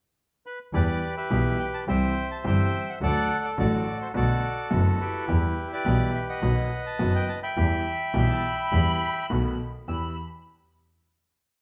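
Tango at 105 BPM in E minor, played rubato with a melancholic, sultry mood, opens on a pickup bar. A reedy, bright, airy bandoneon sits up front, singing motif-based song phrases over a clear, worn grand piano with short sustain and an expressive bowed double bass with vibrato, soft attack and portamento, both marking a marcato tango rhythm in four. An expressive, close violin section enters at 8.1 s with answering phrases in the melody's rests, and the band, playing live in one room with moderate large studio reverb, settles on a final E minor chord at 9.9 s.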